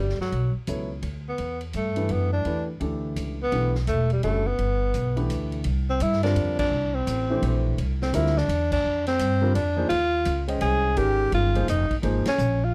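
A dry excerpt of modal jazz in E dorian, swinging in 3/4 at 169 BPM with a hypnotic, intense mood, moving from Em9 and G into suspended C13sus4 and Eb13sus4 harmonies, with band accents landing at 6.5, 8.7 and 12.2 seconds. Up front, a breathy, mellow tenor saxophone carries the solo melody with light vibrato and scooped notes, beside a woody pizzicato upright bass on steel strings. A grand piano accompanies with a natural tone from 0.7 seconds, while a distant, roomy big-band drum kit, its snare medium-tuned, its kick punchy and its top rolled off, sits further back with crash, ride, hi-hat, snare and kick.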